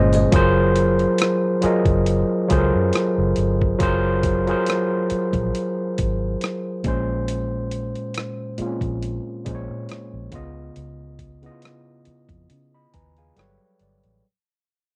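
A barky, overdriven tine electric piano sits up front through a combo amp in this introspective, soulful neo-soul R&B excerpt, carried by a dark, round, foam-muted fingered electric bass and a compressed, sampler-style drum kit with a thumpy kick, hi-hat and rim click, all in a dry, close 1970s-style studio sound that fades out from 0.3 seconds as the electric piano plays a fill from 12.5 seconds.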